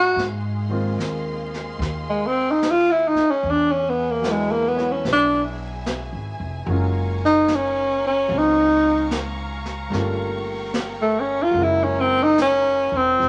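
Vinyl crackle and a moderate large-studio reverb with a dulled top frame this intimate, melancholic swung jazz ballad excerpt, where a breathy, mellow tenor saxophone up front carries the solo melody with vibrato, subtone and scooped notes over a clear baby grand piano with audible action noise, lush bowed symphonic strings holding soft-attack chords, a woody pizzicato upright bass, and a brushed jazz kit of snare and hi-hat that enters at 0.2 seconds.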